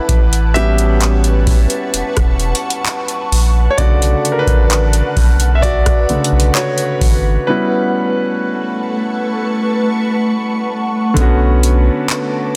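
A straight 4/4 groove from a booming analog drum machine, with its deep kick, metallic hi-hats, handclaps and rim clicks, anchors this late-night, longing contemporary R&B fragment, as a round sine sub bass sits up front beneath a natural-sounding concert grand piano that carries a solo over alternating A13 and Bm7 chords until 11.2 seconds, while an ethereal, airy pad of detuned sawtooth and triangle layers drifts behind through ensemble chorus, phaser and reverb in a dense, heavily limited modern mix.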